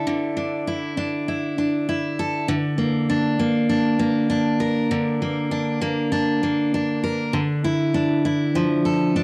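Pop in a sunny, carefree mood, this short solo for picked steel-string acoustic guitar sounds full-bodied and up front, moving from Dsus2 to Bb/D at 2.5 seconds and settling on Dmadd9 at 7.3 seconds, with moderate spring reverb and the character of a home cassette recording.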